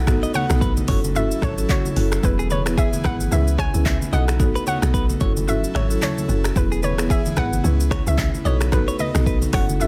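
A dense, heavily limited modern master with little reverb carries this joyful, romantic afrobeats excerpt at 111 BPM with a swung sixteenth-note feel, where a deep, round log drum bass and an electronic afro-pop kit of deep kick, warm hats, snaps, handclaps, rim clicks and shaker sit up front, a woody marimba in a boxy small room and low-tuned, vintage congas fill out the groove, a hollow, bouncy square-wave pluck with chorus carries the melody over an airy, breathy chorused pad in the background, and a twangy, clean direct-recorded electric guitar riff with delay threads through from 0.2 to 9.6 seconds, all circling B7, F#m7, E and C#m7.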